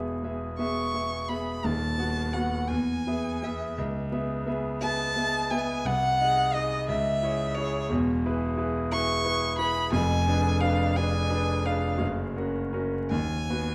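A bright, brilliant concert grand opens this tender, lyrical romantic duo, its deep bass and long sustain setting a lilting 6/8 pulse that breathes with rubato and uneven beats. A single bowed violin enters at 0.6 seconds to carry the melody up front, its rich, smooth tone shaded by vibrato, while the piano accompanies through harmonies that drift from major into minor and a diminished chord before coming to rest on F# and B/D#. A wet recital hall reverb and a vinyl crackle give this short cut from a longer piece an intimate, slightly aged sound.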